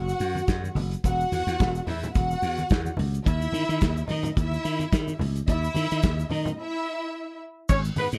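Sultry and glamorous, this disco excerpt moves at 108 BPM with a lightly swung sixteenth feel, built on an up-front soul drum kit with a tight kick and rolled-off top, a bright, growly slap bass, and lush, focused bowed strings carrying a second line over Esus2 and rootless C#madd9 harmony. Low-tuned, ringing congas and a grainy tube shaker sit in the background, and a break arrives at 6.6 seconds before a vintage-flavoured horn section punches in with brief stabs at 7.7 seconds. The production is dark with light reverb.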